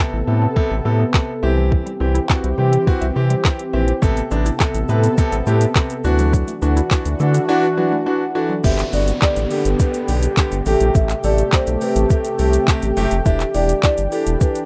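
A dry, rough home-demo mix carries this upbeat, carefree dance-pop cut, where a smooth electronic R&B drum kit with its soft kick, woody snare, metallic hats, handclaps and shaker sits up front beside a round, deep analog bass that pumps under sidechain along with a clear concert grand piano and a lush, detuned unison pad, while a very quiet FM pluck adds percussive arpeggios until a brief silent gap at 7.5 seconds, after which a mellow soft-mallet marimba takes the melody from 8.4 seconds over a background downlifter.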